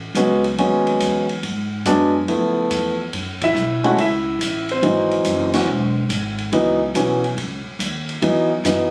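A swung 4/4 at 141 BPM drives this moody, cool jazz piano trio in C# minor, where an up-front concert grand with deep bass carries the melody over woody pizzicato upright bass and an open acoustic drum kit of dark cymbals, medium-tuned snare and boomy kick, the band hitting a shared accent at 3.3 seconds as the harmony moves from Amaj13 toward C#m11, heard through a phone recording in a club room with light reverb.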